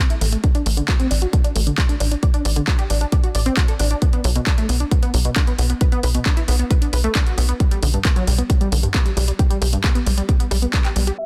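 Emotional and euphoric, this uplifting trance passage, cut from a longer piece, sets tight, detuned sawtooth arpeggios with chorus, digital delay and sidechain pumping under a filter sweep that runs through the full 11 seconds. A layered, up-front kick and a driving sequencer bass, saturated and wave-folded with a plucky filter and its own pumping, sit beneath tape-tinged analog drum-machine handclaps and hi-hat. At 11.2 seconds a huge, bright supersaw lead with phaser flashes in only briefly, all inside a dense, heavily limited modern master with digital ambience.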